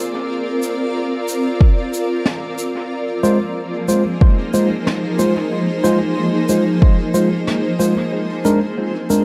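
Ambient dub in F dorian at 92 BPM, this hazy, deep passage is cut from a longer piece and moves in a straight 4/4. A granular cloud pad opens at 0.0 s with sustained chords, its slow-attack, blurred sound evolving and full-bodied with built-in reverb and a long release. Shaker and brushed snare arrive at 0.6 s, acoustic and sitting low in the mix under dub echo, while an overdriven, layered electronic kick pushes up front from 1.6 s to 7.0 s. A mellow tine electric piano enters at 3.2 s with clean stabs, heard through built-in speakers and trailed by dub echo. The harmony shifts from Bb to Fm and then to Bb7, and the echo-heavy mix carries a light small-room reverb and a layer of vinyl crackle.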